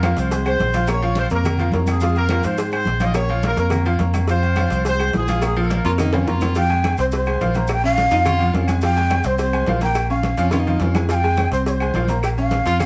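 Heard from a little way back in a moderately reverberant studio, this passionate, danceable salsa excerpt opens with a smooth horn section carrying the melody over a bright, slightly detuned upright piano with audible action noise and a growly, amped fingered electric bass up front. Beneath them sit congas, cowbell and bongos, ringing agogo bells and timbales, woody claves and grainy maracas, all tucked into the background. A clear baritone saxophone joins on a second line at 5.8 seconds, and from 6.6 seconds a breathy bamboo shakuhachi with vibrato takes over the melody, close-miked and forward in the mix.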